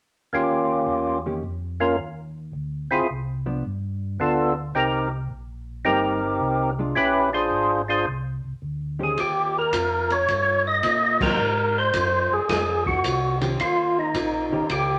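Swinging in 4/4 at 108 BPM, this bluesy, soulful soul jazz organ trio excerpt sets a fat, lightly overdriven percussive tonewheel organ up front on the melody through a slow rotary speaker, over a mellow, round organ bass line colored by chorus vibrato and slow rotary, with a clean, compressed hollow-body jazz guitar comping from 1.3 seconds, before a dark, smooth acoustic drum kit with dark cymbals and a punchy kick enters at 9.2 seconds and the band hits an accent at 11.1 seconds, all in a wet studio reverb as the chords move from Eb7 through Cm7 and Eb9 to rest on Eb.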